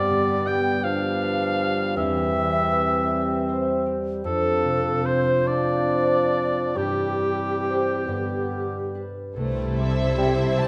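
This classical fragment, cut from a longer piece, unfolds in a lyrical, serene 6/8 with a gently rubato feel. Winds carry the opening: an up-front cor anglais with light vibrato sings a warm second line, joined by a very quiet, hollow silver flute and a distant, roomy clarinet in the background. A dark bassoon supports them while a French horn section holds sustained chords from afar, and a ringing concert harp spreads fingerpicked arpeggios across a broad range. Around 9.4 seconds the strings arrive, with a lush studio violin section in the background, a focused chamber viola section, a portamento-tinged cello section and an intense double bass section settling onto a low C. At 9.8 seconds a clear symphonic violin section takes up the melody with smooth, even bowing over the C chord. A scoring stage reverb gives the whole ensemble a spacious, wet glow.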